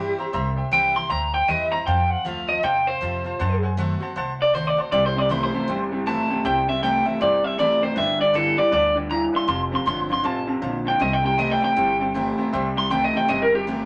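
A swung groove at 158 BPM in 4/4 drives this upbeat, rollicking rockabilly excerpt in C mixolydian, cut from a longer piece, with a woody, thumpy upright bass on gut strings anchoring the low end and a bright, full-bodied jumbo acoustic guitar with audible finger squeak picking underneath. Up front, a twangy, slightly broken-up lo-fi electric guitar through a small old amp takes a clean solo over the whole passage, while a brilliant upright piano with long sustain adds high accompaniment. At 4.9 s a second, warmer electric guitar enters with a low picked riff. The chords move from C through F and F#dim7 back to C, then on to G, F and C, all sitting in moderate studio reverb.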